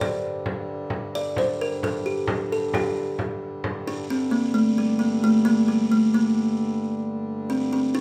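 Heard through a moderate recital-hall reverb, this excerpt of a mysterious, driving medieval dance in G minor moves at 88 BPM in 6/8, with an up-front buzzing kalimba carrying a bright, woody, thumbnail-plucked melody over a reedy, nasal hand-pumped harmonium drone, while a small, soft-handed frame drum plays only until 3.9 seconds.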